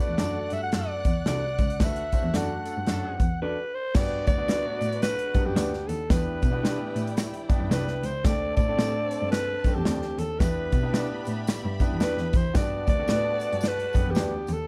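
A breathy, raspy alto saxophone carries the melody up front in this joyful, uptempo 1960s-style soul cut in G major at 112 BPM, swinging in 4/4 over a punchy, airy acoustic drum kit with crash, hi-hat, kick and snare, and a bowed cello with a nasal, gut-string tone holding down the bass. Behind them sit a lush, woody string section and a very quiet jazz-style horn section doubled in octaves as second lines, a brilliant grand piano, slightly broken-up electric guitar stabs and a jingly tambourine. A brief break at 3.4 s opens into a new section at 4.0 s that moves through Gmaj7, Em7 and D7sus4, all within a dark, warm production with light reverb.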